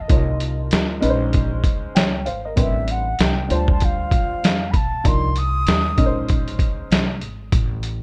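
A swung sixteenth-note groove in 4/4 drives this short, mellow, nocturnal jazz-hop cut, taken from a longer hip hop piece. The trip hop sampler-style kit sits up front and loudest, its thumpy kick, medium-tuned snare and hi-hat sounding compressed, pitched down, muffled and tape-warm, as if re-recorded in a small room. Beneath it, a pizzicato upright bass with steel strings comes through woody, bright and growly, while a worn, slightly detuned upright piano carries the accompaniment through a drifting progression of Cm11, Bbm11, Am11 and Dm7 chords. A distant concert flute floats the melody with an airy, straight tone and a soft attack, colored by analog delay, before falling away at 6.3 seconds, and the piano follows at 7.0 seconds. Bass and drums carry on to the close at 8.0 seconds, and the whole thing has the loose, reverb-washed feel of a rough home demo.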